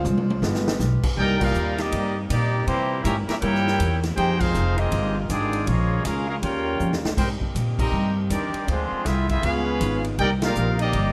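With light reverb and a trace of lossy compression grit, this dramatic big band swing fragment opens on a brief, intimate grand piano with audible action noise, over a woody, thumpy pizzicato upright bass, a very quiet, distant saxophone section holding sustained chords, and a roomy drum kit with dark cymbals, a boomy kick and an early drum fill. At 1.2 s a tight, up-front trumpet section takes the melody with light vibrato and a soft attack and vintage tone, while a warm trombone section carries a second line beneath it. Band accents punctuate the phrases over rich, jazzy harmony moving from Cm9 through Fm11, Abmaj9 and Db7 back to Cm9.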